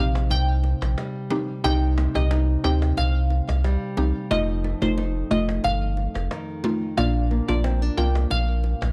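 A dry, gritty cassette sound with a small room around it gives this short dancehall fragment a tough, sultry character in C minor at 90 BPM, straight in 4/4. A deep, round sine sub bass sits up front and anchors the harmony as it moves from Cm to F7 at 4.3 seconds and on to Bb at 7.0 seconds. Over it, a glassy, crystalline wavetable pluck carries the melody with a bright, digital edge, ring modulation and a filter sweep, colored by chorus and tape echo. A mellow, woody FM synth pluck with a mallet-like quality plays accompaniment through chorus and phaser, while a small, fingerpicked nylon-string guitar adds arpeggios with its own tape echo. The cajon enters at 0.2 seconds with a vintage, band-limited tone and faint snares, and very quiet, low-tuned bongos struck with hard hands sit in the background.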